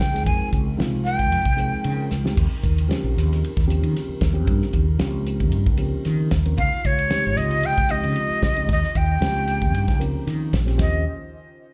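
A breathy flute, a round fretless bass, a damped 70s drum kit and a hollow, airy pad all sound together from the very start of this short excerpt of soaring, slick electric jazz fusion at 114 BPM in a straight 4/4, centred on Eb mixolydian. The close-miked flute sits up front with vibrato, a soft attack and a slightly unsteady tone, carrying the melody between Db5 and Ab5 through plate reverb, slapback echo and tape echo. It breaks off just as a drum fill lands at 2.1 seconds and returns at 6.6 seconds to carry the line to the end. Underneath, the mellow bass stays direct and dark with a lush chorus, while the dry kit offers a fat snare, a tight kick and dark cymbals with a rolled-off top. A clean, reedy electric piano heard through its built-in speakers joins at 0.1 seconds with plate reverb and slapback echo, and the chorused pad sits in the background. The harmony alternates between Dbmaj9#11 and Eb13, and the whole performance comes across as a live gig heard through the venue's PA, with a light club reverb.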